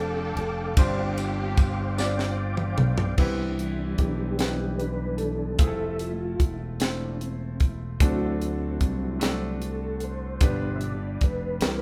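A smooth, bowed string section carries the melody for the first 2.4 seconds over clear, intimate baby grand piano, soft flute-like tonewheel organ chords with slow rotary shimmer, and a growly, punchy fingered electric bass, as a dry, tight funk drum kit with bright cymbals and a faint, jingly tambourine join this slow, reverent and hopeful 6/8 gospel excerpt at 50 BPM in C major, with a drum fill at 2.0 seconds leading into a mellow organ solo from 3.2 seconds over Cmaj7, Fmaj7, D7 and G in a moderately reverberant studio room.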